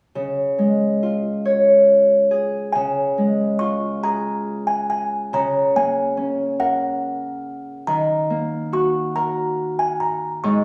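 A bright, ringing Celtic harp opens this gentle, innocent lullaby in Db major at 0.2 s, fingerpicking a rubato accompaniment in a slow 6/8 at 47 BPM, moving from Db to Gb/Db and then Ebm. At 2.7 s a delicate, tinkling music box enters with the melody high above, its soft, slightly out-of-tune voice sounding small and mellow, and it carries the tune until the passage is cut off at 10.6 s. Both parts sit up front, bathed in the wet reverb of a recital hall.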